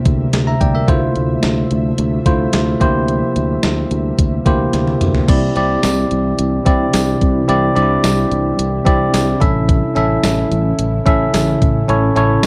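This 1980s-style pop excerpt opens with a bell-like tine electric piano and an ethereal, airy pad sounding together from the start, joined almost immediately by a growly, punchy fretless bass with subtle chorus and a gated digital drum machine. At 109 BPM in a straight 4/4, the mood is urgent yet nostalgic, the chords moving from C7/D and Fmaj7/D before settling on Cadd9 and later A. The drums sit up front with a thumpy kick, toms, hi-hat, crash and a snare drenched in gated reverb, their sampler-style sound carrying a tape-tinged, large-room character. A drum fill at 4.7 seconds leads into a new section at 5.3 seconds, and a jingly tambourine slips into the background from 5.8 seconds. The clean, direct electric piano rings clearly over the mellow, slow-blooming pad, whose detuned ensemble chorus and built-in reverb keep it hazy behind the close, dry studio sound of the rest.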